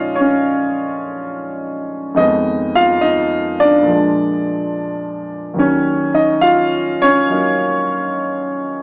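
Solo jazz at a relaxed 70 BPM in 4/4, with a loose rubato swing, where a lone grand piano with a warm, natural tone sits up front as it ranges from Eb2 to F5 over Bbm7, Fm7b5, Bb7 and Ebm7, heard from further back in a studio with wet reverb and a small-speaker sound, in an 8.8-second cut from a longer piece.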